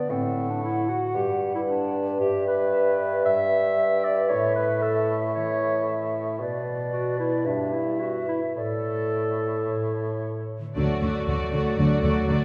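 Classical orchestral music at 113 BPM in D major, urgent and restless, with beats that push and pull unevenly. For most of its length a small wind-and-harp group carries it: an up-front, mellow clarinet and an airy, hollow, close-miked flute with crisp attack trace second lines, while a ringing, fingerpicked harp spins arpeggios and a distant, roomy bassoon supplies accompaniment beneath. The harmony moves through Gmaj7, Em7/G, A and Bm before settling on D/A and A. At 10.8 seconds the full strings arrive on a D chord, with an intense, lush violin melody on a high D, a focused studio violin line, a viola section and a soft-attack cello section in the background, and a smooth, even double bass section placed up front. A mellow French horn section holds sustained chords in the background until 12.0 seconds, and the passage breaks off at 12.4 seconds as part of a longer piece. A wet scoring-stage reverb sets the whole ensemble further back in the room.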